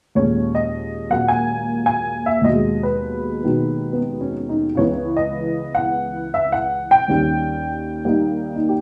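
A loping swing feel at 104 BPM in 4/4 gives this short solo jazz passage, cut from a longer piece, its easy, smoky, late-night sway. A honky-tonk upright piano carries everything alone from 0.2 to 8.8 seconds, ranging from C#2 up to G#5. Its detuned, jangly voice has a woody, vintage character and sits up front in the mix, with the instrument tuned to A4 = 441 Hz. The harmony moves through D#7sus4, G#m7/D#, C#m7 and D#7, a dusky progression that suits the after-hours mood. A moderate studio reverb and a touch of small-room ambience give the piano a live, in-the-room presence.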